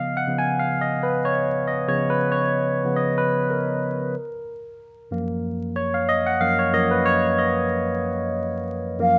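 A smooth, sensual R&B fragment opens with a barky, clean tine electric piano playing alone through a combo amp, sitting up front with analog chorus and plate reverb as it moves over lightly swung sixteenths from a C#6 chord to F#maj7 at 4.1 seconds. At 9.0 seconds a hollow, pure silver concert flute enters with a single vibrato-tinged note, crisp in attack, just before the cut at 9.2 seconds. The rough home-demo mix carries vinyl crackle and a moderate studio reverb.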